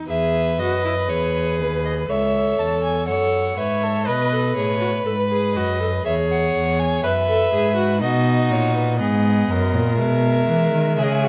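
A clear, focused viola opens this stately yet lively fragment of a baroque-style fugue for string quartet in E major at 61 BPM in 4/4, joined at 0.1 seconds by a warm, vibrato-rich first violin carrying the melody, a smooth, even second violin on an inner line, and a full-bodied, up-front cello anchoring the bass, all bowed by single players within a moderate concert hall reverb as the harmony moves from E through A/C# and B7 before settling on E/B near 10.0 seconds.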